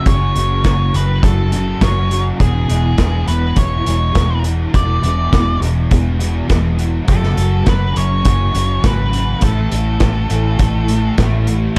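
An octave-fuzz lead guitar carries the melody in this wistful, hazy shoegaze and dream pop rock excerpt, its picked, distorted tone wrapped in slapback echo before it drops out at 11.1 seconds. Beneath it, a thick, double-tracked fuzz guitar plays a dark riff up front, thickened further by ensemble chorus. A vintage fingered electric bass, foam-muted and round through its amp, holds down the low end in a straight 4/4 feel. The loose indie drum kit sits forward in a small, pumping room, with a tight kick, medium-tuned snare, hi-hat and dusky crash cymbals. The harmony moves from F#m to E5, back to F#m and on to A5, all set in light reverb with a shadowy, warm production.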